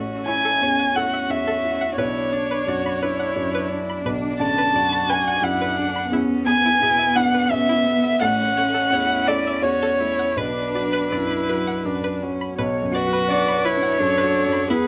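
A dark, woody violin carries the melody up front from 0.3 s in this tender, intimate neoclassical piece for piano and strings, its rubato phrases in three set over a mellow, vintage upright piano, a sul tasto viola with airy bow and a cello second line with light vibrato, while a bright, twangy string-like resonator pluck with chorus plays arpeggios in the background.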